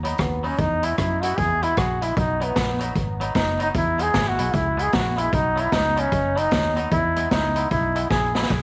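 A swung, bouncy ska groove drives this cheerful, joyful fragment of a longer piece, with a street-band drum kit up front mixing hi-hat, kick drum, ride cymbal, rim click and snare, its boomy kick and dark cymbals giving the beat a rolled-off, mid-forward weight. A round, foam-muted fingered electric bass anchors the low end, while a clean, compressed, twangy electric guitar sits in the background with tape echo, accompanying over a simple back-and-forth between B and E. From 0.2 seconds a bright trombone takes the solo melody, placed up front yet sounding distant and roomy, its tape echo adding a repeating trail. A short drum fill arrives at 8.1 seconds as the passage closes. Moderate spring reverb, a small-room ambience and a layer of vinyl crackle give the whole recording a lively, vintage character.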